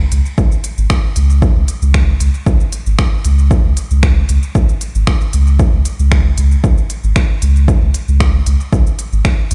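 Cavernous and meditative, this dub techno excerpt rides a light 16th-note swing, built on a round, sine-like sub bass that sits up front with a fast attack and sustained, mellow tone, pumping under sidechain from the start. An overdriven, punchy analog kick enters at 0.4 seconds, while a quieter deep house kit of finger snaps, smooth hi-hats and shaker, present since 0.1 seconds, trails dub echo. The whole piece sounds played through a big sound system in a bare stone room, giving it a hard, reverberant space.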